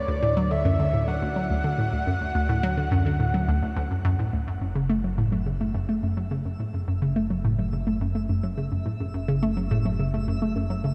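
Ambient, sequencer-driven space music in F# minor at 106 BPM, cosmic and hypnotic, cut from a longer piece and set in a huge, dark reverb. A hollow, bouncy square-wave pluck with chorus and delay carries the up-front riff over a fat, detuned sawtooth bass, while a breathy, flute-like lead with vibrato, chorus, shimmer reverb and delay sings a brief melody that ends at 3.9 seconds. As the harmony moves from D to F#m7, a faint, twinkling granular texture with an octave-up shimmer fades in from 5.3 seconds.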